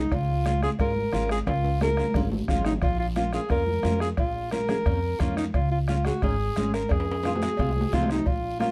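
A mellow alto saxophone leads this fiery, passionate cumbia excerpt in Bb minor at 177 BPM, its smooth, vibrato-laden solo sitting up front beside a woody, pizzicato upright bass, while a small, fingerpicked nylon-string guitar joins at 0.4 seconds over chords moving through Db, Bbm and Fm. Percussion fills out the groove: a close bombo with a soft beater, ringing cowbell and timbales in the background, bright high-tuned congas heard distantly, and a faint, raspy guiro, with drum fills at 1.5 and 6.9 seconds. The production is dark with light reverb.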